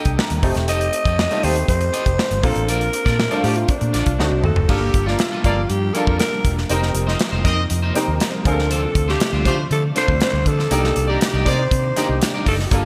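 A steady, straight 4/4 groove at 120 BPM in C dorian drives this polished 1980s jazz-funk pop passage, built on an up-front studio kit with gated reverb, bright cymbals and a tight kick, a dark, foam-muted fingered bass, clear short-sustained baby grand piano chords with ensemble chorus, and a twangy, slightly broken-up guitar riff shimmering with lush chorus in the background. From 0.7 seconds a raspy, breathy alto saxophone carries the bittersweet, nocturnal melody with growl and vibrato, and after a drum fill at 4.2 seconds a distant horn section with delay adds a second line while a very quiet, silky, warbling string machine swells in with sustained chords at 5.5 seconds. Chords move from F9 and Bbmaj7 through Gm9 and Dm7 to a closing Cm9, all set in a bright digital sheen with light reverb, cut from a longer piece.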